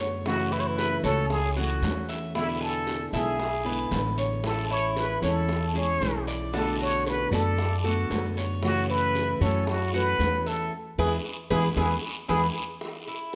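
Latin Cuban son and guajira with a sunny, warm mood, where an up-front plunger-muted trumpet sings a vintage, jazz-style wah-wah melody with scooped notes over a woody, thumpy pizzicato upright bass, a bright, fingerpicked nylon-string guitar, a metallic, picked Cuban tres spinning arpeggios on double strings, raspy close guiro and tight, high-tuned bongos played with soft hands in the distant background, all set in a large studio reverb, with a band accent at 10.7 seconds and a drum fill at 11.8 seconds closing this cut from a longer piece.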